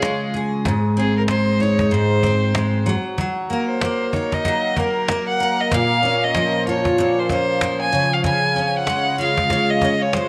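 Acoustic pop at 95 BPM with a gentle sixteenth-note swing, wistful and tender in mood: a smooth, up-front bowed violin carries the vibrato-laced melody over a bright, full-bodied, double-tracked picked steel-string guitar moving through Db, Ab, Ebm/Gb and Bbm, while a woody cajon with faint snares and hard hands sits lower in the mix, the whole brief passage framed by light reverb and small-room ambience.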